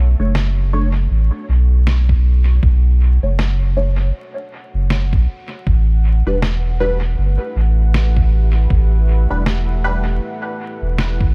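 This ambient dub excerpt moves at a slow 79 BPM in 4/4, with a light swing on the sixteenths giving the groove a gentle lilt. A muffled, thumpy sampled kick arrives at 2.1 seconds, joining a fat, pitched-down electronic snare that is bathed in studio reverb and dub echo. Underneath, a round sine sub bass sits up front with a touch of tube saturation, holding low notes throughout. A filtered dub chord stab, muted and wave-folded with a plucky filtered attack, decays through phaser, ensemble chorus and echo, while a moody, detuned sawtooth pad fades in slowly beneath everything with chorus and its own built-in reverb. The harmony shifts from B7sus2 to A7sus2 at 5.7 seconds, and a layer of vinyl crackle adds a dusty grain to the spacious, hazy atmosphere.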